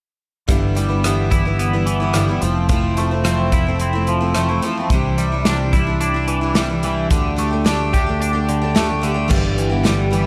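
A shimmering, octave-doubled twelve-string acoustic guitar sits up front, its jumbo body full and picked with audible finger squeak, carrying the accompaniment through this short folk rock and heartland rock excerpt in G mixolydian at 109 BPM in a straight 4/4. Beside it, a twangy, compressed electric guitar plays a clean picked riff colored by analog chorus, giving the nostalgic, jangly mood its bright edge. A fingered electric bass, punchy and warm with a direct, amped tone, holds down the low end, while a natural country drum kit with an airy, polished studio sound brings crash cymbal, hi-hat, a punchy kick, rim click and a medium-tuned snare. All four parts play together from 0.5 s to 10.3 s over a progression moving from G6 through Fmaj7, Cadd9 and Dsus4 before returning to G6 at 9.3 s. A light studio reverb gives the mix a gentle sense of room.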